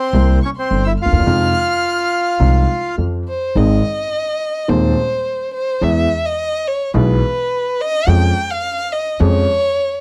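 A reedy bandoneon carries the melody from the opening moment, with a single bowed violin tracing a second line above it, both up front in this passionate, tense tango fragment cut from a longer piece, played with a rubato feel in four. Under them, a warm baby grand piano supplies intimate, natural-sounding accompaniment with long sustain and audible action noise. A pizzicato upright bass with steel strings gives the low end a woody, bright, acoustic character. The bandoneon drops out at 3.0 seconds, and from 3.6 seconds the violin takes an expressive solo, singing with vibrato, portamento and a soft attack. The dry, close sound of a 1970s-style studio is touched by light reverb.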